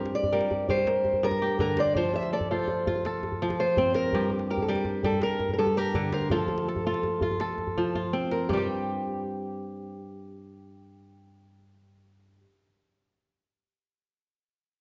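A steady 12/8 pulse carries this flowing, hypnotic stretch of West African traditional string and xylophone music, cut from a longer piece, where bright, ringing kora arpeggios and a dark, woody, boxy melody on a fingerpicked old ladder-braced acoustic guitar sit up front over tight, cracking djembe played with soft hands, which plays a fill from 7.8 s and stops at 8.7 s, as alternating Gm and F chords pass through a wet recital-hall reverb and the warbling pitch drift of worn cassette tape.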